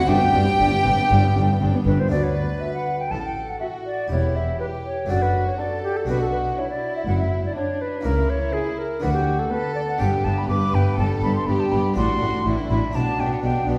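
A pure, tongued concert flute carries the melody up front while a focused, bowed violin section also plays the melody in the background, a second rich violin section plays a supporting line, an airy, brilliant Italian-style harpsichord and a lush viola section accompany, and a smooth-topped cello section and a clear, intense double bass section hold the bass in this brilliant, lively baroque-style concerto passage at 122 BPM in straight 4/4, which moves from D major to G major at 10.0 s inside a wet recital hall reverb heard from further back in the room.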